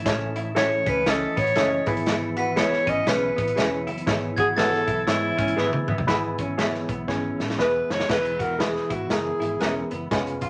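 A vibrato-rich alto saxophone sings the melody up front in this joyful, danceable 1960s-style soul piece, driven by a gritty, saturated breakbeat kit with dark cymbals, a round, foam-muted fingered bass, a clean hollow-body jazz guitar riff, phaser-tinged stabs from a mellow electric guitar, a barky, lightly overdriven electric piano with fast tremolo, and soft, flute-like tonewheel organ chords spun through a fast rotary speaker, while a bell-like glockenspiel second line rings from 0.6 to 5.8 seconds, set in a moderate club reverb.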